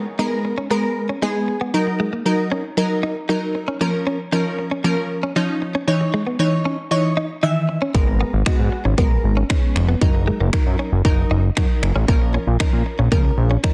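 Crisp, detuned wavetable chord stabs pumping with sidechain and a clean, direct-recorded electric guitar riff colored by analog chorus open this energetic, driving dance-pop excerpt in G# minor at 116 BPM, cycling through G#madd9, D#m/F#, A#m and C#madd9 until a fat, wave-folded analog bass with a filter sweep and a pop kit of finger snaps, punchy kick and softly clipped snare arrive at 7.9 seconds, all set in a moderate digital room reverb under a dense, heavily limited modern master.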